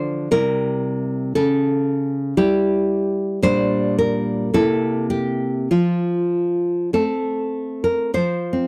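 Wistful and melancholic, this brief romantic fragment for solo nylon-string guitar unfolds in a rubato 2/4, its full-bodied, fingerpicked tone sitting up front in a dry, close 1970s-style studio sound as the chords move from C through A7/C# and Gm/Bb to C7 before settling on F at 5.7 s.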